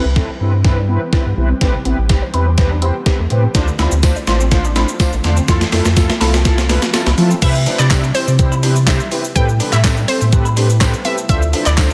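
Upbeat and euphoric, this dance-pop passage, cut from a longer piece, opens with a build-up carried by a drum fill and a filter sweep over a looping Cmaj7, Am9, Dm7, Fmaj7 progression. An overdriven 12-bit drum machine sits up front with a thumpy kick, medium-tuned snare, handclaps, hi-hat, shaker and crash, while a deep, round sine sub bass pumps beneath it. Mellow, detuned synth brass with chorus and analog delay pumps through the chords, over a very quiet, ethereal pad that warbles with a vintage, airy haze. A clean, picked electric guitar riff with lush chorus stays in the background, a hollow, bouncy square pluck arpeggiates until 7.3 seconds, and a jingly tambourine joins at 4.0 seconds. At the drop at 7.4 seconds a bright, punchy unison pluck lead arrives with delay and sidechain pumping, all set in a light, echo-heavy reverb.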